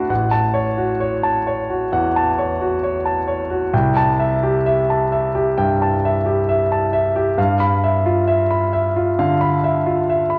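Worn, warbling cassette tape with a warbly pitch drift and a moderate scoring-stage reverb frames this serene, luminous fragment of impressionist solo piano, where a clear, intimate grand piano sits up front with audible action noise and a natural tone, moving in rubato around 66 BPM across a range from A1 up to B5 for about 10.4 seconds of a longer piece.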